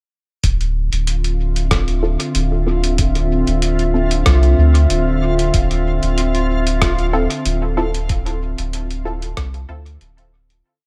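Meditative and hazy, this short ambient dub piece settles into a slow, swung groove built on a single Dm9 chord. A warbling, nostalgic pad with a tape-like, lo-fi character holds mellow, slowly shifting chords through chorus and its own reverb, while a deep, round sub bass sits up front with a soft dub-style line. The beat comes from a muffled, pitched-down electronic kick with a thumpy, tape-warm sound and a sparse lo-fi kit of closed hi-hat and rim click that trails off into dub echo, both carrying the character of being re-recorded in a small room. From 1.2 seconds a reversed, granular texture swells in on a bright, dreamy held high note, and at 2.0 seconds filtered, detuned chord stabs arrive as sparse, echoing plucks moving one shape in parallel, with a filter sweep running across them. The whole piece sits in light reverb and begins fading out at 7.2 seconds.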